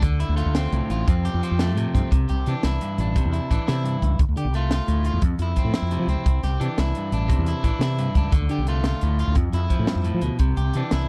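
Highlife guitar band music in 12/8 at 116 BPM, carefree and danceable, this short cut from a longer piece moves through Dm7, F and Cadd9 in C major. An up-front electric guitar, picked and slightly broken-up, carries the accompaniment over a dark, round fretless electric bass that sits close and direct. A compact cocktail drum kit, with a high-tuned snare, punchy kick and hi-hat, drives the groove in a dry, close 1970s-style studio sound with lossy compression artefacts.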